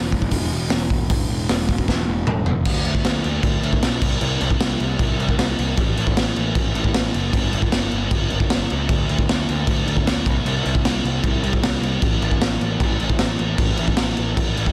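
A straight, driving 4/4 pulse opens this rowdy, energetic punk rock excerpt, cut from a longer piece. A raw garage drum kit carries it up front, its punchy kick, medium-tuned snare, hi-hat, toms and crash cymbal sounding saturated and gritty in a small, pumping room with a rolled-off top. A fuzz picked electric bass starts at the very beginning, dark and round through overdrive, holding the low end between E1 and D2. A drum fill from 1.9 to 2.7 seconds leads out of the short opening passage into the longer second section that carries through to the close at 14.7 seconds. The sound is dry and close, with a dense, heavily limited modern master and the drums sitting louder than the bass.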